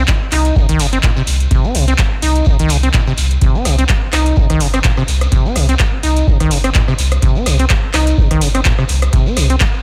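Hypnotic and gritty, this short excerpt of acid house runs at 126 BPM in 4/4 with a light 16th-note swing, sitting in C phrygian over a C minor chord throughout. A squelchy, resonant sawtooth acid bass riff sits up front with saturated, cassette-tape grit, sidechain pumping and dub echo, while a round sine sub bass pumps beneath it and a deep electronic kick anchors the beat. A booming analog drum machine adds handclaps, rim clicks and metallic hi-hats with a tape-warm, large-room character, and a grainy, distant shekere sits in the background of an otherwise dry mix.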